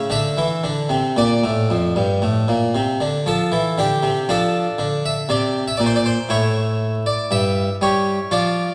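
A wet scoring-stage reverb surrounds this radiant, flowing baroque-style suite movement in D minor, cut from a longer piece, where a solo French-style harpsichord sounds close-miked, full and brilliant, its plucked octave strings up front across a range from F2 to E5 at a rubato 59 BPM in 4/4, opening on D minor before a second section begins at 4.3 seconds and reaches an A5 chord at 6.3 seconds, closing at 8.7 seconds.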